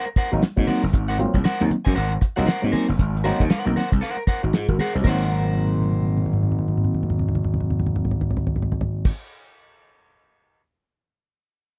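Energetic and gritty, this short funk cut from a longer piece moves at 117 BPM in Ab mixolydian with a 16th-note swing, opening on an Ab9 chord and carried by an overdriven, growly slap bass and a cloth-damped, thuddy drum kit with a fat snare, tight kick and dark cymbals, both sitting up front in a dry, close 1970s-style studio sound. A slightly broken-up picked electric guitar plays accompaniment, a worn, slightly out-of-tune tine electric piano adds stabs through overdrive and phaser, and soft-handed, thin-skinned congas sit very quietly beneath. At 5.3 seconds the drums launch into a fill that runs to 9.0 seconds, and the kit rings on alone until 10.6 seconds.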